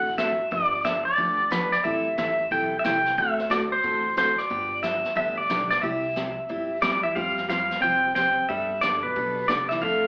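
Country western swing at 180 BPM with a swung 4/4 feel, this down-home, playful excerpt is led by an up-front, twangy pedal steel guitar played with fingerpicks, its volume swells and slide carrying the melody over a full-bodied picked dreadnought acoustic guitar with slapback echo. A woody, thumpy pizzicato upright bass and a jazz brush kit with a boomy kick and slapback echo drive the groove, while a clean hollow-body jazz guitar adds a second line from 6.8 seconds. The whole performance sounds like a live gig heard through a club PA, with room reverb and an AM radio tone.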